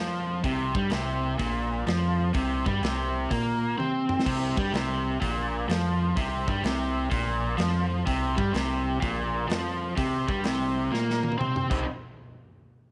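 An overdriven, double-tracked electric guitar riff sits up front over a smooth sawtooth synth bass with vibrato from the opening moment, and at 0.4 seconds a big-room acoustic drum kit with a punchy kick and bright cymbals joins, driving this gritty, smoky blues rock and southern rock power-trio excerpt at 126 BPM with a swung feel, light studio reverb and drum fills at 3.8 and 10.9 seconds.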